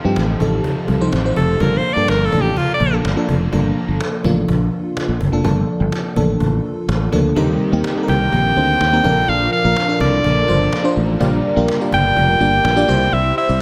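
Light reverb and a small room ambience frame this nostalgic, urgent 1980s-style pop excerpt, where a lush, dreamy FM electric piano with a soft pad layer and a growly, punchy fretless bass sit up front over a woody cajon heard at a distance. An edgy, forceful alto saxophone with scooped notes plays a brief solo phrase at 1.4 seconds and returns at 8.1 seconds to lead. A bright, double-tracked overdriven guitar plays early, then comes back at 7.4 seconds in the background alongside fat, sawtooth analog synth brass stabs.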